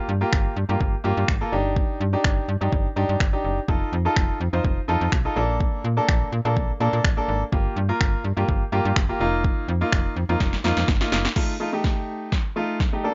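A slap-like FM bass stands out up front, snappy and digital with a metallic, fast attack that decays, pumping with sidechain as it moves between F1 and Bb2 from 0.1 to 11.3 seconds. This is a carefree, euphoric slice of dance-pop at 125 BPM in a straight 4/4, cut from a longer piece and tuned slightly below standard pitch. A clear, polished baby grand piano carries the accompaniment across the whole passage, also pumping with sidechain, voicing chords that move from Gm7 through Ebmaj7/G, F7 and Bbmaj7 before settling on F7sus4 and then F7. A layered, electronic deep house drum kit drives the groove with a deep kick, punchy snare, finger snaps and crash cymbal, re-recorded in a small room and placed up front. Drum fills arrive at 10.4 seconds and continue into a closing build-up from 11.4 seconds. The sound is dry, with little reverb, and has the rough, dull-topped character of a home demo mix.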